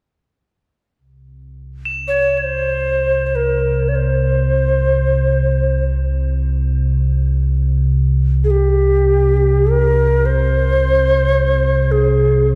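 In free time, this spacious, haunting piece of world meditative music in C major, tuned to A4 = 445 Hz, opens at 1.8 s on an ominous, rumbling drone of detuned triangle and sawtooth tones, pitched from C2 to C3, with a slow attack, long release and its own built-in reverb, sitting up front. At 1.9 s crotales struck with plastic mallets add a shimmering, bell-like ringing on a high E7 that lasts until 9.5 s, and from 2.1 s a Native American-style cedar flute carries the melody between G4 and Db5, airy and wooden with vibrato, a crisp, chiffy attack and a diffuse ambient delay. A wet recital hall reverb and small room ambience frame the dark, warm production of this passage cut from a longer piece.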